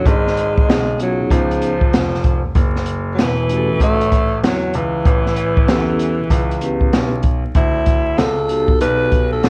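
A raspy, growling alto saxophone carries the melody with slapback echo over metallic, ringing vibraphone with slow motor vibrato from the opening moment, joined at 0.1 seconds by a polished baby grand piano holding the bass line with tube saturation and an up-front acoustic jazz kit of hi-hat, boomy kick and snare roughened by vintage 12-bit sampler grit, the mix draped in light reverb, worn cassette warble and vinyl crackle in this cool, relaxed, swung jazz-hop passage cut from a longer piece.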